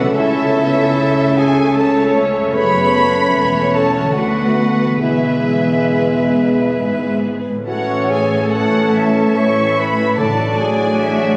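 In a rubato 3/4 at 66-78 BPM, this serene, lyrical classical passage in A major sets a rich violin section's vibrato melody over bright oboe, clear clarinet, hollow flute, and a second lush violin section, with mellow bassoon, smooth violas, ringing harp arpeggios, sustained French horn chords and bowed cellos and double basses beneath, until round soft-mallet timpani enter at 10.2 s, all heard in concert hall reverb captured from within the room.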